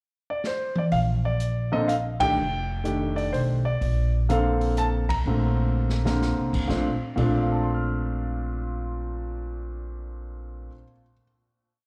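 Jazz piano trio in a swinging 3/4 with a warm mood, heard as a short complete piece captured live through a club PA with small-room ambience and club reverb. The up-front concert grand, deep in the bass and touched with slapback echo, states a motif-based melody of call phrases over syncopated drop-2 comping. The upright bass gives a woody, thumpy gut-string pizzicato two-feel, while the drum kit keeps stick time on the hi-hat with dark cymbals and a boomy kick, adds fills and band accents, and drops out at 7.4 s as the piece settles onto its final chord from 6.7 s.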